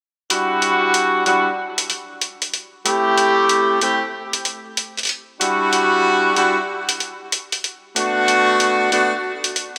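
At 0.3 s a bright jazz-style horn section and a pitched-down electronic hi-hat enter together, opening this swaggering, gritty glitch hop passage cut from a longer piece. The horns play ensemble stabs between G3 and G4 with a light vibrato. A low-pass filter and a delay shape their sound, and they sit up front in the mix. The sampler-style hi-hat is compressed and tape-warm, with a coarse, crunchy grain, and it sits up front too, while the track moves with a swung sixteenth-note feel at 94 BPM in 4/4. The harmony in E minor moves from Em9 to Am7, back to Em9, then to Bm7, while a lush hall reverb soaks the whole 1980s-style digital production. The horns stop at 9.1 s, and the hi-hat carries on alone until 9.8 s.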